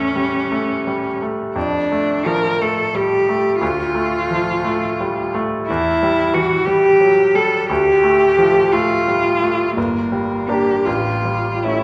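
A rich, bowed cello sings a smooth, even melody with vibrato over a bright, brilliant grand piano accompaniment with short sustain, both up front from the opening moment of this melancholic, solemn romantic classical duo in 6/8 with free, uneven rubato, all set in the wet reverb of a recital hall heard from further back in the room.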